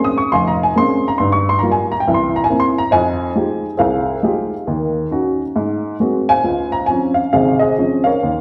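Solo jazz with a moody, cool feel, played on a single upright piano at 137 BPM in 4/4 with a 65% swing on the eighths, loosened by rubato and tuned to A4 = 444 Hz. The warm, woody, slightly detuned piano sits up front with a short sustain, ranging from F1 to Eb6 as it moves through Bbm9, Gm7b5, C7 and Fm9, then Ebm7 and Ab9 before arriving on Dbmaj7 at 6.4 seconds. A wet recital-hall reverb of about 1.3 seconds gives this 8.4-second fragment of a longer piece the reverberant sound of a church or concert hall.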